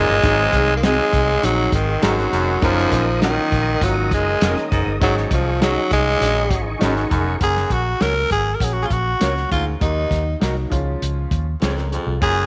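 A straight 4/4 groove at 100 BPM drives this joyful, danceable excerpt of uptempo 1960s-style soul, carried by a dry, lo-fi drum kit with a muffled, rolled-off top, a tight kick, a medium-tuned snare and hi-hat. Underneath, a vintage fingered electric bass sounds dark, round and foam-muted, thickened by transformer saturation, while a baritone saxophone plays a low riff with scooped notes, vibrato and a smooth top. Up front, a growling tenor saxophone takes the melody with a raspy, breathy, gritty and punchy tone and a light vibrato. A worn, woody upright piano with a slightly detuned, long-sustaining sound fills in the accompaniment, and a very quiet, clean electric guitar adds dark fingered stabs from 0.8 seconds. A lightly overdriven tonewheel organ with key click, chorus vibrato and rotary speaker holds sustained chords over Ab7, Gb6 and Ab7sus4 until 7.4 seconds, after which the harmony moves through Gb, Ebm and Db. 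An echo chamber reverb and small room ambience give the mix a vintage, roomy finish.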